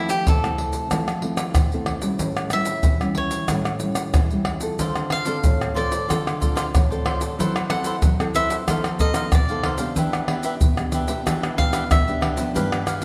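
A bright, crisp cavaquinho carries the melody in this lively, festive samba and choro excerpt at 93 BPM in 4/4, and its line ends at 12.2 s, while a second picked cavaquinho joins as accompaniment at 4.8 s. Beneath it, a warm, thumb-plucked classical nylon-string guitar supports chords moving from Fmaj7 and A7 through Dm7, F#m7b5 and F7#11 to Em7. Tube shaker, pandeiro, tamborim and a tight surdo sit up front with a small-room character, all set in a wet recital-hall reverb.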